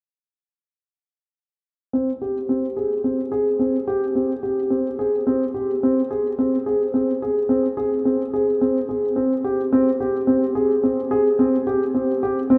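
A dark concert grand piano sits up front, rolling out arpeggios between C4 and Ab4 from 1.9 seconds to 12.6 seconds in this contemporary instrumental fragment cut from a longer piece. The mood is restless yet hypnotic, carried by a straight feel in an uneven 7/8 metre that keeps the figures circling. The piano's tone is mellow with deep bass and long sustain, and it is tuned slightly sharp of standard pitch. A huge, wet ambient reverb with a seven-second tail places the instrument in a vast, echoing space, so each note blooms into a lingering haze. The opening passage gives way to a new section at 9.7 seconds before the fragment breaks off.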